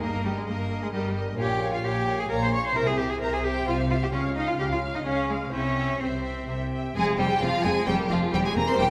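A solo cello, rich and up front, carries the melody from the opening beat of this stormy, dramatic baroque-style concerto excerpt in F minor, moving at 131 BPM in 3/4 over a rich violin section on the high melody, a clear, distant violin section on a second line, a background viola section, and a bass of dark, woody cellos and intense double basses, the strings all bowed with vibrato, joined by a delicate fingerpicked lute in a wet recital hall, with the harmony turning toward F minor at 7.0 seconds.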